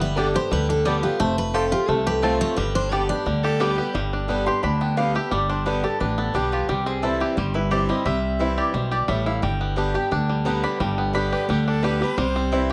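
Set in a light room reverb, this driving, virtuosic bluegrass excerpt in G mixolydian runs at 175 BPM, with a bright, full-bodied steel-string dreadnought guitar carrying the plate-reverbed melody until 3.4 s over a boxy swing-style guitar with finger squeak, twangy fingerpicked banjo arpeggios and a dark, thumpy gut-string upright bass up front, while a woody, double-strung mandolin plays stabs before taking a solo from 3.9 s and a clear, biting fiddle adds a brief second line around that point and again near the end.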